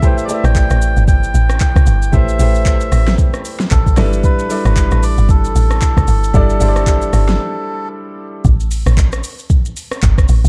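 Amapiano with a soulful, late-night mood, this swung excerpt is cut from a longer piece and carries a dark, warm production in a digital ambience. A reedy, breathy melodica with a plastic-case nasal tone carries the melody through tape echo, while a clear concert grand piano with deep bass and long sustain supplies polished accompaniment. The smooth R&B drum kit sits up front with a soft kick, fat snare, metallic hats, handclaps, rim click and shaker, its electronic sound tape-colored and re-recorded in a large room. Entering at 0.4 seconds, the woody log drum bass is punchy and percussive, with a fast attack, a decaying tail and a noise layer. After a break from 7.4 seconds, the melodica stops at 7.9 seconds. The drop begins at 8.4 seconds as the harmony moves to a suspended chord, and the piano stops shortly after at 8.5 seconds, leaving drums and log drum bass to drive it.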